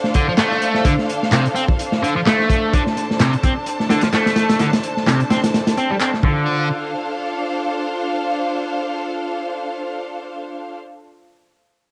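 An overdriven, double-tracked electric guitar riff sits up front in this playful, energetic breakbeat excerpt at 128 BPM in 4/4 with a light 16th-note swing, passing through a low-pass filter and analog delay over a Dm7 chord. A crunchy, saturated breakbeat kit with a punchy kick and rolled-off top drives the groove beside analog electronic handclaps set in the background. Meanwhile a lush, bowed string section holds sustained chords with vibrato and sidechain pumping, carrying on alone after the guitar stops at 6.7 s, all captured as a home cassette recording with small-room ambience and light reverb.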